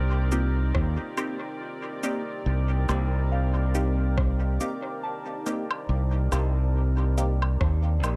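Ambient dub, hazy and meditative, drawn from a longer piece with a lightly swung feel. A deep, moody pad of detuned sawtooth and sine layers holds sustained chords with chorus and reverb, while a pure, gentle FM bell plays arpeggios with chorus and dub echo in the background, and a bright fingered electric bass sits direct and up front. From 0.3 seconds a muted, phased chord stab with dub echo and overdriven electronic shaker, rim click and woodblock enter together, and a soft, overdriven electronic kick enters at 0.7 seconds low in the mix, inside an echo-heavy digital ambience.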